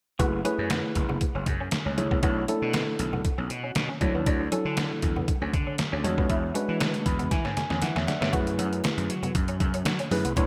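Funky and late-night, this early-eighties boogie funk clip in F# minor moves at 118 BPM in a straight 4/4, cycling through F#m11, Bm11, Dmaj9 and E13 chords. An overdriven, sampler-style 8-bit drum machine with a thumpy kick, fat snare and gated reverb sits up front beside a growly, punchy slap bass. A worn, slightly out-of-tune tine electric piano through a combo amp carries the chords, while a dark, clean semi-hollow guitar riff lingers in the background and ringing congas stay very quiet. The electric piano fills from 6.8 seconds and a drum fill follows at 7.3 seconds, leading into a new section at 8.3 seconds, all set in lush digital hall reverb with bright 1980s-style production.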